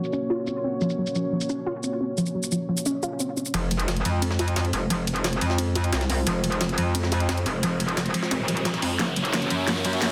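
A dense, heavily limited modern mix sits in a moderate digital room, giving this short cut from a longer dark technical drum and bass track at 176 BPM in F Phrygian a mechanical, shadowy mood. From the start, a deep, moody analog pad with detuned sawtooth layers and chorus holds sustained chords over Gb. A soft, round pluck spins arpeggios through analog chorus and dub echo, and an electronic kit with a cracking snare, bright hats, shaker and overdrive drives the groove. At 3.5 seconds the harmony moves to Fm as an aggressive, metallic wobble bass arrives up front, saturated and chorused. A gritty, pitched-up jungle sampler kit with a high-tuned snare and tape-tinged ride and hats joins it in the background. A filter sweep moves over the pluck through the build-up, a background riser enters at 6.2 seconds, and a drum fill arrives at 9.0 seconds as the harmony returns to Gb.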